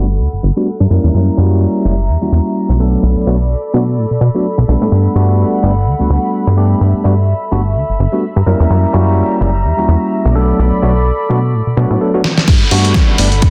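A punchy, funky plucky analog bass drives this joyful, sunny filtered disco house excerpt at 127 BPM in G major, pumping beneath a bright tine electric piano with phaser and 12-bit grit and a soft, distant bowed string section, the three riding a filter sweep until a gritty sampler-style drum kit fills at 12.2 seconds and an overdriven electronic kick and a background downlifter arrive for the drop at 12.5 seconds.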